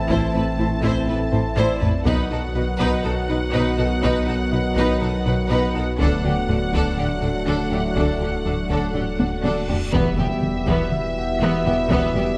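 A cinematic hybrid orchestral and electronic film score in E minor at 122 BPM, futuristic and relentless, where a lush violin section carries the melody over a clear close second violin line, rich viola, cello and very quiet double bass sections, dark distant French horns, mellow trombones, a shimmering retro pulse-width pad, a deep sub bass, a very quiet grand piano, a soft round pluck playing arpeggios and background taiko drums with fills at 1.3 and 9.2 seconds, all in a recital hall reverb, moving from Am through B and D before a huge reverse cymbal and impact lands on Em at 9.9 seconds in this excerpt from a longer piece.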